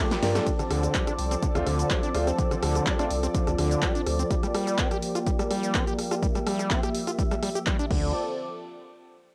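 Raw and trippy, this short acid house cut from a longer piece runs at 125 BPM in straight 4/4, set in D minor and moving from Dm7 to Gm7 and back to Dm7. A lush, detuned sawtooth unison pad holds sustained chords throughout, bright and airy with chorus, sidechain pumping and a filter sweep from 0.5 to 8.1 seconds. Beneath it, an overdriven acid bass plays a squelchy, resonant riff with tube saturation and analog delay, while a thick triangle sub bass with its own sidechain pumping drops out at 4.2 seconds and returns briefly near the end. A punchy, overdriven analog drum machine opens with a fill at 0.2 seconds and brings crash, ride, hi-hat, shaker, rim click, snare and handclaps, with an overdriven electronic kick sitting up front from 0.5 seconds. A clear, intimate grand piano adds stabs with audible action noise and analog delay in the background until 3.1 seconds, all captured as a home cassette recording in a moderate studio ambience.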